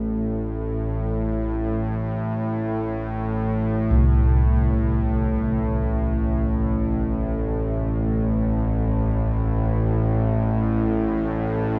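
Desolate and ominous, this dark ambient drone excerpt drifts in free time in A minor, tuned to A4 = 441 Hz, as an up-front, bowed-like drone with a tense, string-like sawtooth edge, ring modulation, vibrato and its own reverb holds from A1 to A2 across the full 11.8 seconds, while metallic bronze gamelan-type bossed gongs with a round, beating tone play delayed arpeggios on C2 from 3.9 to 9.8 seconds, all set inside a huge, wet ambient space with a 7.6-second decay.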